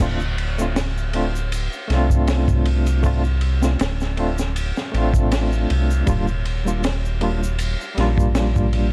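A round, deep analog bass sits up front in this dark, cinematic trip hop excerpt at 79 BPM in D phrygian, alongside a crunchy breakbeat kit with a punchy kick, high-tuned snare and shadowy cymbals on lightly swung 16ths, a bright, barky tine electric piano carrying tremolo and tape echo over Dm7 moving to Ebmaj7 at 6.1 seconds, and a faint egg shaker in the background, set in a dry, dusky mix flecked with vinyl crackle.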